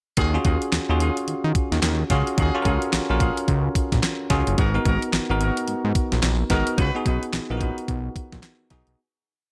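A clean, up-front mix with digital ambience carries this punchy, bouncy new jack swing piece in Eb minor at 109 BPM, where a hard-swung 12-bit drum machine with a thumpy kick and clap-layered fat snare drives a thick, detuned sawtooth bass line with muted ghost notes and filter sweeps, while a bell-like tine electric piano adds syncopated rootless chord stabs with grace notes and a smooth-topped horn section punches short jazz stabs through tape echo until it stops at 7.8 seconds, moving from Ebm11 to Abm9 and Db9sus4 before the fade-out that begins at 6.8 seconds.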